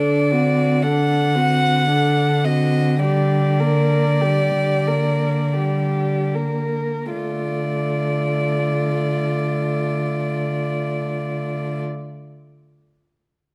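In a rubato 6/8 at 25-39 BPM, counted in dotted quarters, this slow romantic string quartet movement in D minor (tuned to A4 = 436 Hz) feels yearning and solemn, slowing down over its first 7.1 seconds as the harmony moves from D7 to Gm/D before settling on Dm. A rich, up-front violin carries the melody sul tasto with light vibrato and an airy bow, above a woody second violin line and a dark, more distant viola accompaniment, while an intimate cello holds a bass on D3 with a soft attack. Close, detailed microphones catch the quartet in a recital hall with moderate reverb, in a passage cut from a longer piece.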